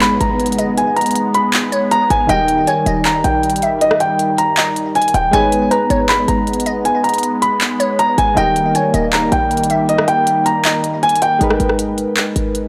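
A dry, gritty recording with little reverb frames this hard-hitting, melancholic trap excerpt in G# harmonic minor, moving at 158 BPM in a half-time 4/4 feel over chords that alternate between G#madd9 and D#. A dark, mellow concert grand piano sits up front with the melody, its deep bass tone trailed by tape echo. Beneath it, warbling lo-fi synth keys with a nostalgic, detuned character and chorus fill in the accompaniment, while a vintage, resonant pad sustains evolving chords, and a short, punchy 808-style bass anchors the low end alongside a crisp electronic trap kit of handclaps, hi-hat and rim click. A very quiet electronic downlifter sounds only until 2.3 seconds, and a glassy, nasal wavetable pluck enters at 0.6 seconds with a crystalline second line colored by chorus and tape echo. The piano, pad and pluck drop out at 11.4 seconds, leaving the synth keys, bass and drums to carry the brief closing section.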